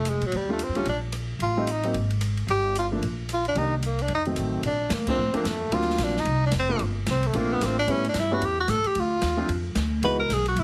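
A clear, present tenor saxophone carries the melody over woody pizzicato upright bass from the very start, with an airy drum kit of dark cymbals, a medium-tuned snare and a boomy kick arriving at once and a warm grand piano comping from 0.5 seconds. This cool, smoky small-group swing and bop cut moves at a brisk 223 BPM in 4/4, opening in G minor before shifting to Bb major at 4.6 seconds, and the band hits an accent at 5.0 seconds amid rich extended chords. The sound sits in a moderate club reverb with a heavily compressed, radio-like character, and the passage is lifted from a longer piece.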